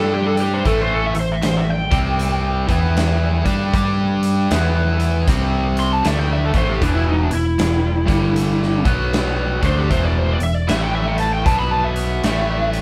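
A live-in-one-room recording with moderate studio reverb captures this gritty, driving blues rock and southern rock excerpt at 78 BPM in 4/4, its eighth notes swung. A double-tracked, bright, overdriven garage guitar plays the riff up front beside a growly, amped picked electric bass, while a dark lead guitar through a small cranked amp carries the melody over power chords moving through G5, A5, C5, E5 and B5. The big acoustic drum kit enters at 0.4 seconds with a punchy kick, a medium-tuned snare and hi-hat, its sound smooth and rolled off at the top.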